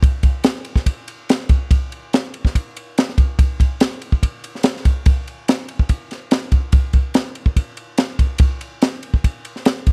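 A dry, close studio sound in a 1970s style frames this short rock excerpt, cut from a longer piece and carried entirely by a crisp, polished fusion drum kit set up front. Across its 9.9 seconds in straight 4/4, a punchy kick, a high-tuned snare and a dark ride cymbal sit in an airy studio room with little reverb. The mood feels wistful and intricate.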